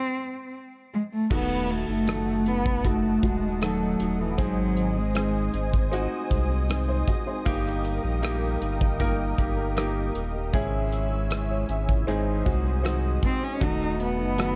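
Melancholic pop ballad at 78 BPM in 4/4, tuned to A4 = 438 Hz and cut from a longer piece, where a dark, nasal, bowed solo cello with vibrato and portamento sings the melody alone up front until 1.3 seconds, when a clear, woody upright piano, a mellow detuned sawtooth pad with chorus, a fingerpicked jumbo steel-string acoustic guitar in the background, a deep sine-and-triangle sub bass with octave and a natural country drum kit with punchy kick and dark cymbals enter over D#dim, G#, D#/G and C#m/G# chords. The cello drops out at 5.7 seconds, and the emotional cello returns at 13.2 seconds, all in a small room.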